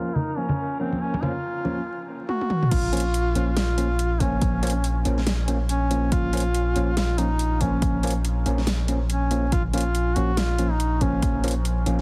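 Heavily compressed and radio-like, dry with vinyl crackle under a low-pass filter, this cavernous, dark deep dubstep cut at 141 BPM in half-time, with swung 16ths in Bb minor, opens on a reversed, dreamy swelling texture, ringing close-miked congas and gritty overdriven tine electric piano stabs under a filter sweep, while an up-front folk-style duduk with vibrato and scooped notes carries the melody through dub echo, until a drum fill at 2.3 s leads into the drop at 2.7 s, where a dubstep kit with a huge snare and metallic hats, a deep overdriven electronic kick in the background and a round, soft sub bass up front take hold through 12.0 s.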